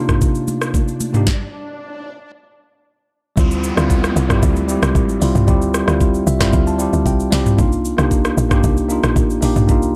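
A bell-like tine electric piano opens this deep, late-night amapiano excerpt, its bright, clean tone sitting direct and up front over smooth minor eleventh chords, moving from Cm11 to Dm11 and back to Cm11. An electronic afro-pop drum kit joins almost at once with a knocking kick, sharp snare, metallic hats, rim click, shaker and toms, re-recorded in a large room yet placed up front in the mix, while a brief touch of high-tuned, damped congas sits dry in the background. An electronic swell rises from 0.8 seconds into a stop, and at 3.4 seconds the drop arrives with a tight log drum bass, punchy and percussive with a fast attack, a decaying tail and a noisy edge. From 6.0 to 7.6 seconds the electric piano plays a fill, and a downlifter winds the effects down by 7.6 seconds. Light reverb and a dark, warm production give the whole piece a straight, unhurried groove.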